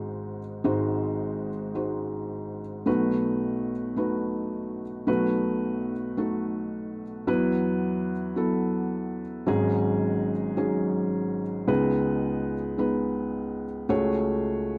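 A felt-muted upright piano plays alone through this short folk passage, cut from a longer piece and lasting just under 15 seconds. Its tone is soft and mellow, with the muting felt dulling each note, and the audible action noise of the keys and hammers sits close to the listener in an up-front, intimate placement. The piece moves in a straight 6/8 and spans from the low G#1 to C#5, giving the melancholic mood a deep bass foundation. The harmony moves from G#7 to B7, then through Esus2 and G#7sus4 before reaching G#m/C# at 11.7 seconds and closing on F#madd9/C#. A light reverb surrounds the piano, keeping the quiet, private character of the recording.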